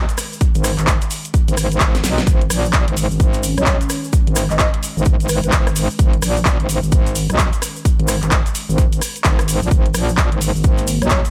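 A punchy, overdriven electronic kick drives this gritty, swaggering bass house excerpt at 129 BPM in 4/4, with a 62% swing on the sixteenths giving the groove its strut, and a short drum fill lands at 1.9 seconds. Up front, a metallic wobble bass in G# minor growls between G#1 and B1, saturated and thickened with chorus and pumping against the sidechain. The house kit adds handclaps, hi-hat, rim clicks and a cracking snare, all overdriven, while a grainy cabasa sits in the background. Beneath it all, a very quiet, detuned sawtooth pad sustains evolving chords with a resonant filter swell. A breathy, hollow concert flute enters with a brief delayed phrase at 3.6 seconds and returns just before the cut, adding a mellow contrast to the dry, aggressive mix.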